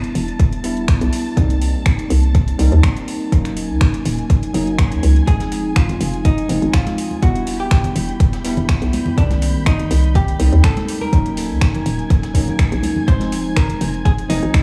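Deep house at 123 BPM with a light 16th-note swing and a deep, late-night mood, cut from a longer piece. A bell-like tine electric piano plays chorused, filtered stabs with dub echo over Em7, Cm7, Ebm7 and Fm7. Beneath it sit a hollow, bouncy FM bass, an overdriven up-front kick and a house kit of finger snaps and metallic hats, with a silky, warbling string machine pumping softly in the background. At 5.3 seconds a dark, gritty hollow-body jazz guitar melody enters with dub echo, joined by a very quiet sampler-style breakbeat kit with a high-tuned snare and close, dry congas, all within an echo-heavy mix.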